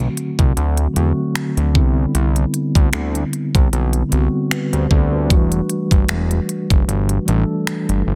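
A gently swung 76 BPM trap groove of finger snaps, crisp hi-hats, a knocking kick and a softly clipped snare drives this sensual, longing contemporary R&B excerpt, where a fat, detuned sawtooth analog bass with a saturated filter pluck and a mellow tine electric piano move through D7, Cmaj9 and Em11, all kept dry and up front in a dense, heavily limited modern master.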